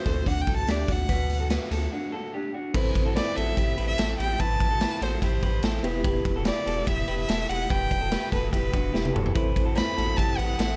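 A dark, lightly reverberant production frames this youthful, bright jangly indie pop passage at 145 BPM, where a rich, smooth bowed violin carries the melody up front with vibrato and digital delay over twangy, slightly broken-up guitar arpeggios from a small old amp (also delayed), a reedy electric piano with fast tremolo in the background, a deep, thick saturated sub bass, and a gritty, punchy garage drum kit in a bright stone room, with a break at 1.9 seconds and a drum fill at 8.9 seconds as the chords move from D7 to Am, Em and back to Am.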